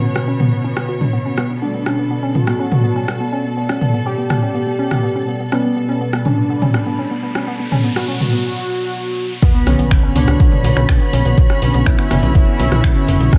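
A straight 4/4 pulse at 123 BPM drives this hypnotic melodic techno passage in B minor. Beneath it sit a punchy, overdriven analog drum machine of finger snaps, hi-hats, rim clicks and toms, distant bowed symphonic strings, a dark, woody wave-folded pluck with dub echo and a filter sweep, and nasal analog synth brass stabs. A warbling, lo-fi tape-like pad and a resonant overtone-sweeping drone add texture under a fat, detuned analog lead with tape echo that enters at 1.6 s. A riser and a break lead into the drop at 9.4 s, which lands with an electronic impact as a funky, saturated plucky analog bass and a deep, layered kick drum arrive up front.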